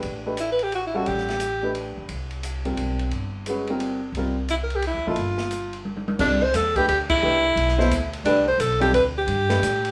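A clear alto saxophone with light vibrato and scooped notes leads this searching, hypnotic modal jazz excerpt at 175 BPM in a swung 3/4, phrasing first at 0.4 s and returning at 4.5 s, over an intimate baby grand piano with audible action noise, a woody, growly pizzicato upright bass and a dark, smooth drum kit with a boomy kick, whose fill at 5.9 s carries the music into C major on a Cmaj9, captured as a rough home demo with small room ambience.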